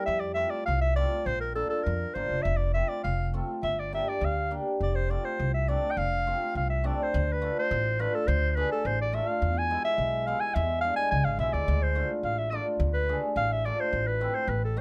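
A breathy clarinet carries the melody up front in this klezmer piece. Its mellow tone bends through scooped notes and vibrato, with a smooth top and a jazz-inflected solo voice. Beneath it, a hammered cimbalom supplies shimmering, ringing accompaniment, while a pizzicato upright bass with gut strings sits forward, thumpy, dark and woody, entering at 0.1 seconds. The mood is bittersweet yet festive, in a straight two-beat feel that gradually speeds up across the whole passage. Around 7.1 seconds the music moves into a second section, where the harmony shifts from chords on F, B-flat and G minor toward D minor, E and A minor. Light reverb and close, detailed microphones give the acoustic instruments an intimate presence, and the passage is cut from a longer piece.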